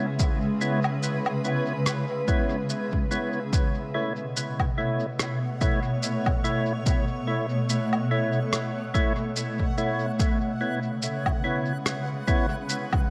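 A cloudy, evolving granular pad and a fat, lightly overdriven tonewheel organ playing percussive stabs through a slow rotary speaker and dub echo open this meditative, spacious ambient dub piece in C# minor at 72 BPM with a swung 16th feel, joined at 0.2 s by a punchy, overdriven kick up front and a muffled, compressed shaker, woodblock and rim click carrying dub echo, while a dreamy, reversed, detuned texture appears faintly in the background from 4.3 s as the chords move from C#m7 to B9sus4 and back inside a moderate concert hall reverb.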